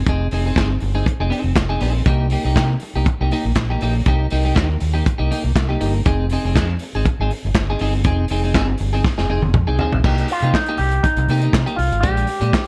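A dark, warm small-room production with light reverb frames this glamorous, danceable disco excerpt, where a lo-fi, muffled soul drum kit with a tight kick, handclaps and dark cymbals plays up front beside a punchy, overdriven fingered bass, a compressed clean electric guitar with lush chorus comps through Fm7 and Cm7, and after a drum fill from 9.0 seconds a bright, twangy envelope-filtered guitar takes the melody at 10.3 seconds.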